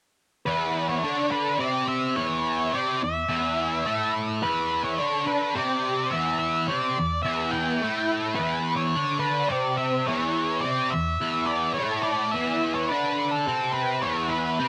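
Set in a straight 7/8 metre, this hypnotic, mysterious rock excerpt, tuned to A4 = 435 Hz, opens on an E5 chord, with both guitars playing from 0.5 to 14.7 seconds. Up front, a bright, double-tracked overdriven electric guitar picks a low riff coloured by flanger, while a dark, picked octave-fuzz lead guitar carries the melody higher up, its distortion trailed by tape echo. A light reverb surrounds the pair.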